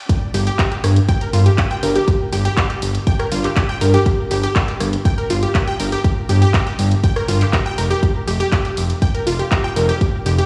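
The fat analog bass dominates this emotional, dreamy progressive house excerpt at 121 BPM in G minor, a thick, saturated, detuned sawtooth sound sitting up front between F1 and G1 and pumping against the sidechain from 0.3 seconds. Above it, a lush unison pluck carries the arpeggios from F4 to G5, its bright, punchy sawtooth tone layered with noise and sine and shaped by a filter sweep, with dub echo trailing its decaying notes. A punchy, up-front electronic kick drives the straight 4/4 pulse from 0.1 to 10.1 seconds. A layered house kit adds handclaps, rim clicks and bright, high-passed hi-hats that breathe with the sidechain. The whole drop has the feel of a big sound system in a bare stone room, with a light reverb wash over it, and it is cut from a longer piece.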